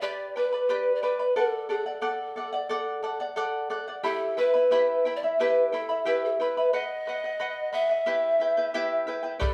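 Wistful and melancholic, this short cut from a longer Andean folk piece moves at an unhurried 89 BPM in a straight 4/4, set in E minor. A wooden pan flute carries the melody up front, its airy, mellow, polished tone marked by a crisp chiff on each attack, rolled-off highs, vibrato, and a somewhat unsteady quality. Beneath it, a bright fingerpicked charango shimmers with its doubled strings, some of them in octaves, as it plays the accompaniment through a progression that moves from G and D into E minor and B before settling back on E minor. A deep, dark bombo strikes close and up front only at the very end, around 9.4 seconds. The ensemble sounds as though it is playing live together in one room, wrapped in a wet studio reverb.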